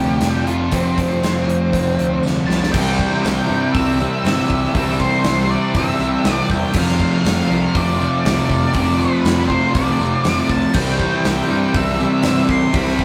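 A rough rehearsal-room sound soaked in wet studio reverb carries this hazy, blissful shoegaze and dream pop rock excerpt at 120 BPM in C major, where a fuzzed octave lead guitar with analog delay sings the melody over thick fuzz and crunchy overdriven guitar riffs, a growling, direct-amped picked bass, and a very quiet, lush vintage string machine ensemble with chorus, while gated 80s drums with bright cymbals and a punchy kick enter at 0.2 s alongside a faint jingly tambourine, a drum fill arrives at 2.2 s, and a double-tracked overdriven guitar with spring reverb joins at 2.7 s as the harmony moves between F6 and Cmaj7.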